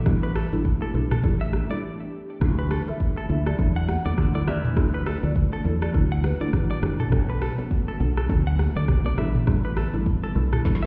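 A woody, chorus-and-phaser mallet-like synth pluck and a very quiet, ethereal pad open this sunny, breezy afrobeats excerpt in D major at 102 BPM with a swung sixteenth feel, quickly joined by a round, punchy fingered bass and an up-front electronic drum kit with deep kick, woody snare and metallic hats, soft high-tuned congas, and a bright, twangy clean electric guitar riff with delay, while a hollow clarinet-like synth lead with vibrato drifts in the background from 2.9 to 6.4 seconds, all heard muffled as if through a wall in a stone-room ambience, with a brief break at 1.8 seconds and a drum fill at 10.7 seconds.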